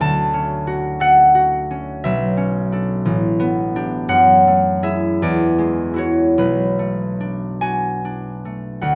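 In a rubato 6/8 lilt of about 47-59 dotted-quarter beats per minute, this short classical excerpt for solo concert harp, tuned to A4 = 444 Hz, sets a mysterious, gentle mood in B dorian as the fingerpicked, ringing harp sits up front and spans A1 to A5 through Dmaj7, Bm11, A9sus4, F#m9 and E9 before settling on Bm7 at 6.4 seconds, all captured by close, detailed microphones within a moderate recital-hall reverb.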